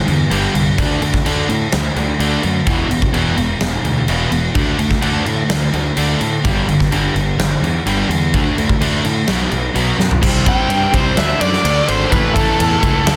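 A dark, double-tracked overdriven electric guitar riff sits up front in this menacing, aggressive hard rock excerpt at 127 BPM in 4/4, moving through power chords on G, D, E and B, backed by a growly, punchy fuzz bass and a huge, natural arena drum kit with a punchy kick, medium-tuned snare, crashes, ride and toms. A drum fill at 10.0 seconds leads into a new section with C, D and A chords, where a smooth overdriven lead guitar enters at 10.5 seconds with a melody. The dense, heavily limited modern master carries light reverb and small room ambience.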